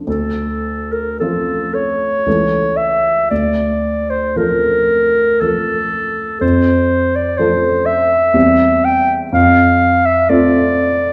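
Romantic classical duo in an unhurried, elegiac triple metre, where a mellow, smooth-topped clarinet sings the solemn melody up front from 0.1 seconds over a dark, vintage-sounding grand piano accompaniment with short sustain. The playing breathes with a flexible rubato, and the pair sits in a reverberant recital hall heard from further back in the room. This is a brief cut from a longer piece, lasting to 11.1 seconds.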